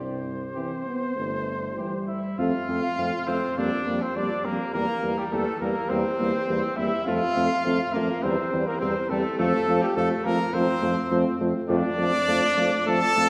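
Classical brass quintet writing in F major at a stately 103 BPM in 4/4, this triumphant passage, cut from a longer piece, sets a dark, smooth-topped trumpet melody up front over a tuba bass line that is warm, distant and roomy, with a clear second trumpet and mellow French horn entering at 0.5 seconds and a vintage-toned euphonium accompaniment joining at 0.6 seconds. The trumpets, horn and tuba carry vibrato, and the harmony moves from C to F at 2.4 seconds, passing through Gm7/F and C7/E before returning to F at 7.1 seconds, then moving through C/E and back to F at 9.4 seconds. A wet concert-hall reverb places the ensemble further back in the room, lending the brass a grand, resonant bloom.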